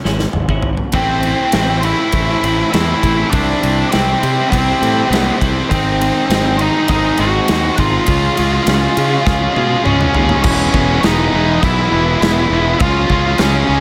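A dark, up-front octave-fuzz lead guitar carries the melody from 0.9 seconds in this cathartic, restless quiet-loud alternative rock excerpt at 101 BPM, backed by a growly fuzz bass, a punchy big-room drum kit with bright cymbals and fills, a tight distorted riff guitar, a very quiet second distorted guitar joining at 5.7 seconds, and a twangy, chorus-drenched twelve-string playing background arpeggios until 10.4 seconds, all in light reverb.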